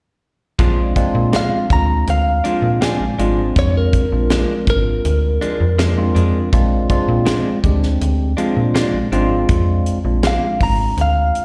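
Heard as a live gig through the venue's PA with recital-hall reverb and a dulled top end, this laid-back, swaggering excerpt of straight-eighth soul blues in Bb mixolydian at 81 BPM sits on a Bb7 chord, with a tight funk drum kit (high-tuned snare, tight kick) and a snappy, metallic slap-like FM bass up front, a clean tine electric piano with phaser and slapback echo comping, a direct-recorded clean electric guitar adding spring-reverbed stabs until 10.5 s, and a second picked, compressed clean guitar carrying the melody from 1.4 s.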